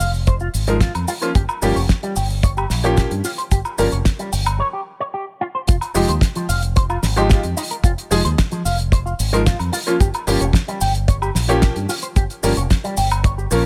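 A straight, steady 111 BPM pulse drives this sensual, sleek nu-disco excerpt, where a tight, up-front kick and a damped 70s kit with a fat snare, hi-hat and woodblock sit over background cabasa, a punchy envelope-filtered fingered bass anchors the low end, a dark, compressed envelope-filtered guitar riff shimmers through lush chorus and digital delay, and a clear baby grand piano pumps with sidechain and delay, all in a small room before a break at 4.6 seconds gives way to the drop at 5.7 seconds.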